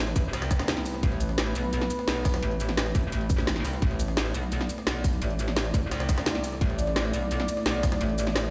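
This dark technical drum and bass excerpt at 172 BPM in A minor feels tense and aggressive, sitting on a single A minor chord throughout its 8.5 seconds. A metallic FM wobble bass, saturated and bright with chorus, sits up front alongside a tight, tape-warm electronic kick and an overdriven drum and bass kit with a woody snare, shaker and bright hats. Beneath them, a deep, warbling sawtooth pad holds sustained chords with sidechain pumping, while a gritty, pitched-up sampler-style jungle kit with a high-tuned snare plays in the background, all heard in a lush hall and a stony, bare room.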